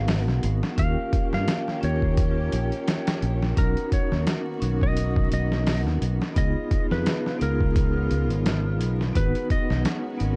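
Dark, warm production sits under a digital ambience and a layer of vinyl crackle, with the top end rolled off for a muffled, brooding haze. This cinematic trip hop cut moves at an unhurried pace with a light swing, its harmony cycling through minor-seventh, dominant and major-seventh chords. A gritty, overdriven sampler-style drum kit comes in at 0.1 seconds, set up front with a thumpy kick, a medium-tuned snare and hi-hat that sound compressed and re-recorded in a small room, while a warm, fingered electric bass anchors the low end just as prominently. A metallic, ringing vibraphone played with medium hard mallets adds close, dry accompaniment treated with tremolo, and a distant symphonic string section holds bright, intense sustained chords with light vibrato. Over this, a clean, twangy lap steel guitar carries the melody with slide and tape echo until 9.8 seconds. At 10.0 seconds a very quiet, tense, string-like drone with phaser and built-in reverb creeps in as the passage is cut off.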